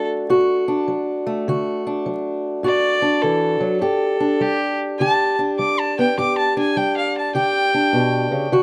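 A rough home-demo sound with vinyl crackle and light studio reverb frames this short, rollicking slice of acoustic country blues, swinging at 102 BPM in 4/4. A reedy, gut-string fiddle with a smooth top carries the melody as a featured solo from the start to about 8.5 seconds, while a dark, boxy parlour steel-string guitar, fingerpicked, accompanies it. Both sit up front in this gritty duo as the harmony moves from D to G5 at 3.8 seconds.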